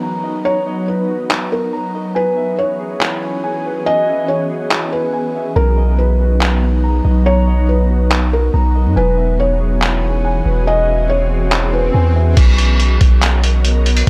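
Atmospheric cloud-rap hip hop in B major, this dreamy, floating fragment moves at 141 BPM in 4/4 with a half-time feel, drifting between Bmaj7 and E6 chords. A felt-muted upright piano carries the melody with a soft, intimate, dark tone, its thick felt and audible action noise trailing into delay. Alongside it, a clean, fingered electric guitar plays compressed arpeggios with its own delay. An ethereal, airy pad of detuned unison sawtooth and triangle layers, with a noise layer and ring modulation, sustains chords through ensemble chorus and built-in reverb, pumping from sidechain compression. The lo-fi sampler-style drum kit enters at 1.3 seconds, pitched down, muffled and overdriven, its thumpy kick, hi-hat, handclaps and crash cymbal sounding re-recorded in a small room and sitting up front. A deep, sine-based 808-style bass arrives at 5.6 seconds with a fast attack and long decaying notes, and an electronic swell sits in the background as the piano and guitar drop out by 12.4 seconds, leaving drums, bass and pad in an otherwise fairly dry mix.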